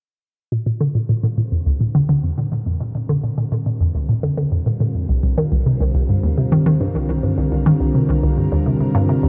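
From 0.5 s, a lush, detuned unison pad fades in on sustained chords while a hollow, nasal square-wave pluck plays a bouncy low riff up front, with tape echo and a filter sweep on the pluck and chorus on both parts. This mysterious, expansive sequencer-driven ambient space music moves at 105 BPM in a straight 4/4, shifting from Bb to C7(no3) at 5.1 s. A huge, wet reverb with a 7.5-second tail and a dark, warm production frame this passage, which is cut from a longer piece.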